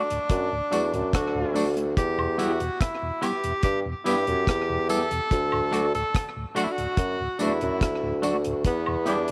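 A clear tenor saxophone carries the melody up front, its tone smooth at the top with a light vibrato and a trail of tape echo, in this serious, meditative roots reggae excerpt cut from a longer piece at 72 BPM in 4/4 with a straight feel. Beneath it, a mellow bassoon takes the bass line, also up front, singing with a classical poise and gentle vibrato, while a deep, dry reggae drum kit with a tight kick, hi-hat and rim click sits forward with slapback echo. A soft, flute-like tonewheel organ with key click turns through a slow rotary speaker, and a barky, reedy electric piano adds very quiet, lightly overdriven stabs with fast tremolo. A twangy, fingered electric guitar with tremolo and tape echo stays in the background, joined by tambourine and woodblock with tube shaker and group handclaps in a small room. A punchy, distant horn section doubles in octaves on a brief second line from 0.3 to 1.7 seconds during the opening band accent, as the harmony moves between D and Em under light reverb.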